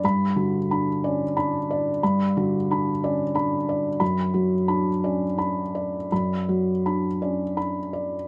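Neoclassical minimalist piano in D major, moving in a rubato 3/4 at roughly 80-92 BPM, with a peaceful, intimate mood in this short excerpt from a longer piece. A felt-muted upright piano plays alone throughout the 8.3 seconds, its thick felt giving a soft, dark, mellow tone, with the mechanical action audible and the instrument placed up front. The harmony rests on Gmaj7 before shifting to D6/F# at 4.0 seconds, set in a moderate studio reverb.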